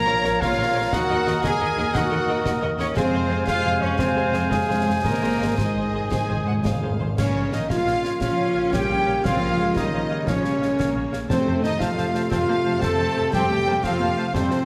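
Swashbuckling and adventurous, this heroic adventure film score rolls along at 117 BPM in 12/8, settling into Bb dorian at 7.2 s, as a lush violin section carries the melody over a rich bowed cello and double bass foundation, joined by a very quiet second violin line, a clear viola accompaniment, background lines from a pure-toned flute, a distant clarinet and a cor anglais, sustained chords from a soft-attack French horn section and a tight trombone section, mellow trumpet stabs, close, dry snare drum, bass drum and dark clash cymbals, and calf-head timpani that enter at 5.0 s for a fill, the orchestra placed in a moderate scoring-stage reverb.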